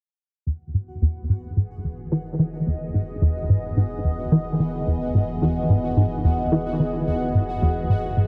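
Expansive and luminous, this fragment of sequencer-driven ambient space music sets a punchy, funky plucky analog bass riff up front under a filter sweep, while a swirling phased analog pad holds sustained Emaj7 chords, a round sine sub bass fades in deep beneath, and a pulsing gated triangle texture joins at 0.9 s, all soaked in a huge, dreamy reverb.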